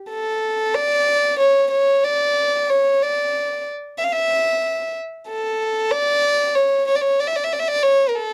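This Arabic piece in A maqam hijaz moves at a steady 93 BPM in 4/4, a soulful, longing fragment cut from a longer work. A single bowed violin carries the line alone from 0.1 to 8.3 seconds, ranging from A4 to F5 with a soft attack, an airy sul tasto tone and a pure, floating quality. It sits close and up front in a dry 1970s-style studio sound touched by light reverb.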